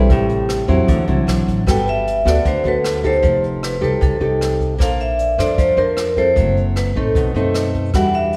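Bossa nova with a relaxed, breezy mood, cut from a longer piece, where a bright, bell-like tine electric piano sits in the background beside an up-front, thumb-plucked nylon-string guitar, a woody pizzicato upright bass and a brushed drum kit with a boomy kick and rim clicks, and then a metallic, ringing vibraphone with slow motor vibrato takes the melody at 1.7 s over jazzy chords such as Gmaj9 and B7b9 in a moderate hall-like reverb.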